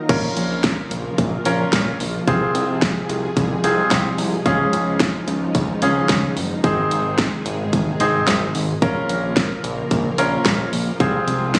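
A clear, intimate grand piano sits up front with audible action noise, carrying the accompaniment through this bright, nostalgic synth-pop excerpt over a punchy, layered electronic drum kit with a fat snare and crash cymbal. A thick, detuned analog bass with a fast attack and filter sweep anchors the Bbm, Fm/C, Dbadd9 and Ab progression. Behind them, a vintage string machine voicing cellos holds slow-attack sustained chords with ensemble chorus, all heard through light reverb in a phone recording of the room.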